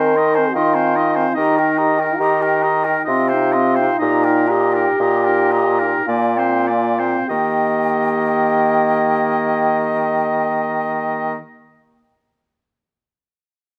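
Lyrical and tender, this short passage from a slow romantic movement for wind quintet unfolds in Eb major in 3/4 at 46-75 BPM, with a rubato feel and a gradual slowing from 0.2 to 7.3 seconds. An airy, hollow concert flute carries the melody high in its range, sitting in the background with vibrato and tongued notes, while an oboe with a soft attack and light vibrato sings a second line beneath it. The French horn and clarinet fill out the accompaniment in a distant, roomy classical style, the horn touched with light vibrato. The bassoon anchors the bass up front, punchy and warm with vibrato, the most prominent voice in the blend. The harmony moves from Ab/Eb through Eb, Cm and Eb/Bb to a rich Bb13, settling on Eb at 7.3 seconds as a brief contrasting section begins. Light reverb and close, detailed microphones give the ensemble a clear yet intimate sound.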